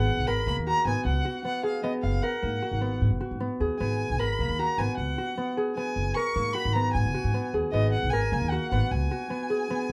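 Set in an uneven five-beat metre with a straight feel, this brief contemporary chamber piece moves with a pensive yet urgent energy, and it is cut from a longer work. An upright bass anchors the low end with woody, thumpy pizzicato on steel strings, sitting up front from 0.0 to 9.9 seconds. Above it, a concert harp plays fingerpicked arpeggios in a ringing, warm voice. A single bowed violin carries the melody high in its range, smooth and even with a rich vibrato. Light reverb and a dark, warm production shape the trio's sound, tuned slightly high at A4 = 445 Hz.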